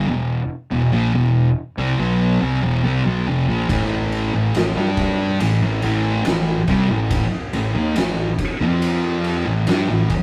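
A brooding, sludgy stoner and doom metal excerpt in which two thick fuzz guitars grind out the riff, one warm and up front, the other dark and set back, over a growly, punchy fuzz fingered bass, and an oversized low-tuned drum kit with a punchy kick, fat snare and dark ride cymbal joins them at 3.7 seconds, all captured in a rough rehearsal-room recording with tube saturation and light reverb.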